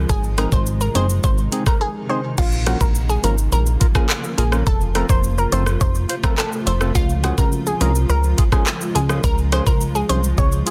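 A cloudy, blurred granular pad and a punchy, funky analog bass open this sunny, bouncy dancehall excerpt in Db major at 105 BPM, with the pad's sustained chords pumping against the beat and washed in their own reverb. An electronic afro-pop kit arrives at 0.1 seconds up front, its knocking kick, metallic hats, handclaps, rim clicks, shaker and crash sounding as if re-recorded in a large room, while the snare carries a touch of soft clipping. A round, detuned analog pluck carries the melody through chorus and digital delay, its filter sweep and moving notch lending it a bright, shifting edge. From 0.4 seconds a hollow, organ-like stab adds mellow, percussive chords with a chorus shimmer. After a short break from 1.8 to 2.4 seconds, the harmony moves through Bbm, F and Db, and the dense, heavily limited master keeps the mix close and dry.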